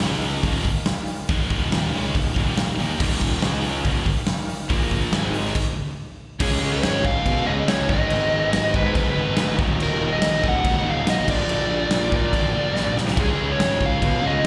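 A big, up-front acoustic rock kit with a punchy kick, fat snare and bright cymbals drives this aggressive hard rock excerpt in Eb minor at 142 BPM, joined throughout by a growly, fuzz-overdriven fingered bass, a heavy high-gain guitar riff with slapback echo, a very quiet cranked stack guitar and a soft, flute-like tonewheel organ on a slow rotary speaker, with a faint, double-tracked crunchy guitar entering at 3.0 seconds and, after a full stop at 5.6 seconds, a dark, distorted lead guitar melody arriving at 6.4 seconds, the band captured live through the venue's PA in a recital hall's light reverb.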